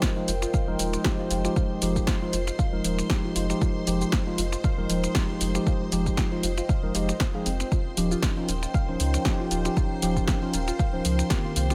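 Opening on a moody, phased analog pad, gritty 12-bit sampled tine electric piano stabs with digital delay, an overdriven deep kick up front and a punchy overdriven drum machine of finger snaps, hi-hat, shaker and snare, with a very quiet warbling ambient pad and shimmering string-machine violins behind them, this hypnotic deep house excerpt in F minor at 117 BPM, swung on the 16ths, adds a soft, round pluck arpeggio with tape echo and a warm, round sine sub bass at 0.3 s, several parts pumping against the kick in light reverb as the harmony moves from Fm9 to Eb9 at 7.7 s.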